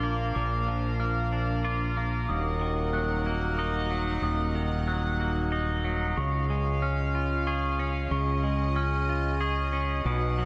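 This brooding, cathartic rock passage in 3/4 at 93 BPM, cut from a longer piece, opens with every part at once: a growling, overdriven fingered bass up front, a bright, clean, twangy electric guitar picking arpeggios, and a rubber-mallet glockenspiel ringing soft, bell-like arpeggios high above. A distant chamber string section holds pure, floating bowed chords underneath as the harmony moves from Bb to Ebm at 2.3 seconds and Db at 6.2 seconds. The guitar and glockenspiel trail a diffuse ambient delay, and a lush hall reverb soaks the mix in a dreamy haze, tuned slightly low to A4 = 436 Hz.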